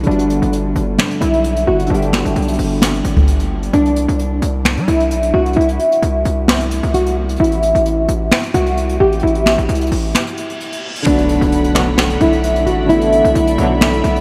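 Trap-inflected hip hop at 131 BPM in a half-time feel, melancholic and dark in B phrygian, where a thumb-plucked nylon-string guitar carries the melody through chorus and diffuse delay over a saturated, aggressive distorted 808-style bass, boomy brushed jazz drums with snaps and hi-hat, and a smooth vintage baby grand piano in the background, all soaked in a dreamy cathedral reverb, until a brief break at 10.1 seconds brings a reverse cymbal and impact that open onto floating sul tasto strings at 11.1 seconds, joined by very quiet brass stabs at 11.7 seconds.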